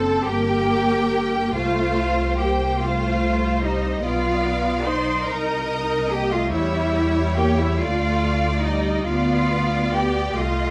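A full string orchestra opens together in a solemn, yearning slow movement in G minor, moving at a flexible, rubato 48 beats per minute in 6/8. A focused, lush violin section carries the melody while a second violin section adds a smooth, even line above it, and an intense viola section, an up-front cello section and a rich, studio-toned double bass section fill out the accompaniment and bass, all bowed with vibrato. Over light reverb and a vinyl crackle, the harmony darkens through C minor and diminished chords before settling on D minor and a G7 over D at 9.1 seconds, where this fragment of a longer piece breaks off.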